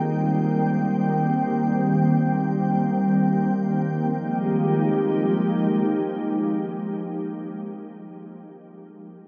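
Soaked in a huge, dreamy reverb with a 7.8-second tail, this deep, late-night amapiano excerpt in F minor floats in free time as a glassy, ethereal FM pad sits up front from 0.0 to 7.0 s, its dark, chorused sustained chords spanning Eb3 to G5 with a slow attack and long release, moving from Cm7 to Fm11 at 4.0 s.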